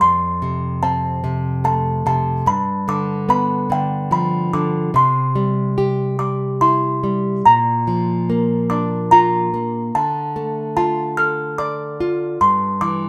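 In a straight 3/4 at 73 BPM, this innocent, tender children's lullaby pairs a delicate, tinkling music box carrying the melody with a bright, fingerpicked nylon-string guitar accompanying beneath it, both sitting up front in a moderate studio reverb that suggests players sharing one room. The harmony moves from F through G7 to C, then turns at 7.5 seconds to Bb and Dm before resting on C/G, the music box staying mellow and smooth against the guitar's small acoustic tone. The passage is cut from a longer piece and runs 13.1 seconds.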